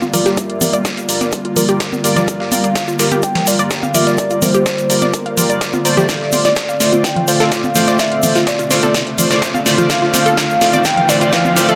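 A straight 4/4 pulse at 126 BPM drives this dreamy, expansive progressive house build-up in G minor, cut from a longer piece. A punchy electronic kick, a pop drum kit with a fat snare and metallic hats, and a gritty, compressed sampler-style kit sit under sidechain-pumped background congas and a grainy, close egg shaker, all bathed in a huge ambient reverb. A velvety, mellow sawtooth lead with vibrato and dub echo carries the melody over an airy, breathy pad, while a glossy chorused polysynth with a tape tint stabs and a bright detuned unison pluck arpeggiates, with filter sweeps moving across the lead, pluck and polysynth as Gm7 gives way to F6 at 6.1 seconds, a drum fill begins and a riser enters at 8.2 seconds.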